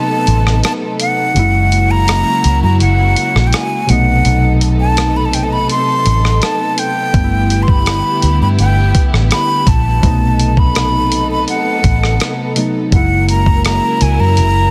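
A breathy, vibrato-laden concert flute carries a romantic melody with tape echo over chorused, detuned analog keys and a bowed, sul tasto string section from the very start of this smooth contemporary R&B excerpt at 83 BPM, joined at 0.3 seconds by a dark, foam-muted fingered electric bass and a gritty sampler-style drum kit of thumpy kick, hi-hat and rim click, as the chords move through B7b9, F#7 and G6 under a dense, heavily limited modern master.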